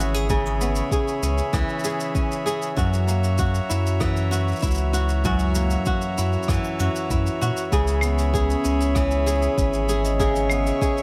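Intimate and delicate, this short folktronica excerpt moves at an unhurried, straight 4/4 pulse over a harmony that shifts from C#m7 to F#7 and back. Up front, a bright, fingerpicked flamenco guitar spins arpeggios with audible finger squeak, its sound carried by delay and plate reverb, while a reedy single-reed accordion with dry tuning holds sustained chords in a boxy small room. Beneath them, a round sine sub bass gives a deep, up-front foundation, joined from 0.3 seconds by a soft, produced electronic kick re-recorded in a small room. A natural-sounding jazz kit played with brushes adds claves, hi-hat, rim click and shaker at a low level. At 8.2 seconds a mellow, ringing vibraphone struck with soft mallets, motor off, enters as a second line, its metallic tone also treated with delay and plate reverb, and the piece is cut off at 11.0 seconds.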